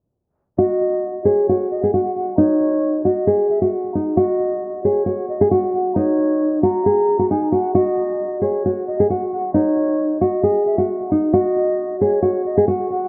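Bathed in a moderate plate reverb and a low-pass filter that sweeps from 0.6 to 13.1 seconds, this dreamy yet triumphant half-time hip hop excerpt at 134 BPM, tuned to A4 = 436 Hz, sets an up-front, full-bodied, fingerpicked nylon-string guitar melody with tape echo against a softer second line from a breathy jazz flute, whose straight tone, gentle attack and lifted highs also trail tape echo.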